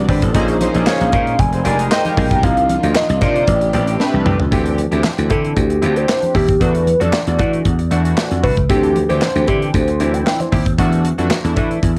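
Early-eighties boogie funk at 115 BPM in 4/4 with a straight, danceable, late-night feel, cut from a longer piece and heard as a light-reverb home recording on cassette. A growly, punchy slap bass and an airy, polished drum kit with handclaps sit up front, joined by very quiet congas, a twangy clean guitar riff in the background, a glossy chorused polysynth, lush strings holding sustained chords until 4.5 s, and a dark, distant horn section playing a brief second line. A velvety sawtooth synth lead carries the melody from 0.9 s over minor-eleventh changes from Bbm11 to Am11, and after a drum fill it turns at 4.5 s into a soft solo over alternating D9sus4 and E9sus4 chords.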